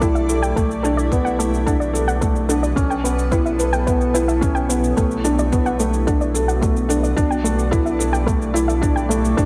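Cinematic and intimate, this short cut from a longer piano and strings electronica piece moves at 109 BPM in 4/4 with a straight feel in B minor, circling chords such as Bm7 and C#m7b5/B. A felt-muted upright piano sits up front playing a mellow, dark riff through a low-pass filter with a filter sweep across its length and digital delay, while a warbling, vintage soft round pluck spins arpeggios through chorus, cassette tape coloring, sidechain pumping and delay. Beneath them a blurred, granular cloud pad holds sustained chords, a round sine sub bass pumps on B1, and an overdriven electronic kick and shaker drive the beat, all set in light reverb and digital ambience.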